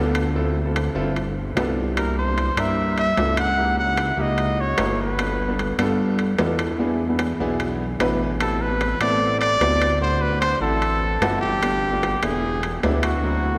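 This sunny, lively Afro-Cuban jazz passage is heard in a church or concert hall, with a long cathedral-style reverb opening up the space, and it is cut from a longer piece in straight 4/4. A warm concert grand piano plays accompaniment throughout, intimate and natural, with deep low notes and audible action noise. Underneath, a fat analog bass with a thick, detuned sawtooth tone, fast attack, sustained notes and a filter sweep sits up front, while close, dry timbales ring out from their metal shells. A clear, punchy trumpet takes the solo melody from 2.0 to 5.8 seconds and returns at 8.4 seconds, playing forcefully in a jazz style with light vibrato and scooped notes. The harmony moves through chords such as Dm7, G7, C7, C#dim7, E7, Am7 and D7.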